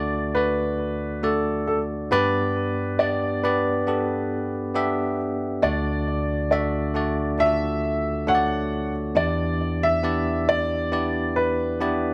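A grand piano and a bell-like tine electric piano sound together from the opening moment of this emotional, heartbroken pop piece, cut from a longer work and moving at a slow, straight pace. The grand piano carries the melody in a high register with a smooth, vintage warmth, its notes trailed by a digital delay. Beneath it, the electric piano supplies a bright, clean accompaniment that sits direct and up front, reaching from low bass notes up into the upper range. The harmony moves from D to G and back to D before settling on Em7 at 9.2 seconds, where a new section begins. Light reverb and a small room ambience give the pair an intimate, close setting through to the cut at 12.1 seconds.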